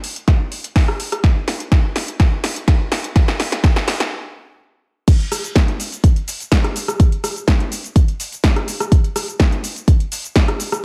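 A dry, up-front mix carries this short cut from a longer house track at 125 BPM in straight 4/4, with a bittersweet, emotional mood. A layered deep house drum kit, with punchy snare, metallic hats, rim clicks, shaker and crash under overdrive, builds through a drum fill alongside a layered electronic kick before a stop at 4.1 seconds. At 5.1 seconds the drop arrives, and the kick sits loudest in the mix.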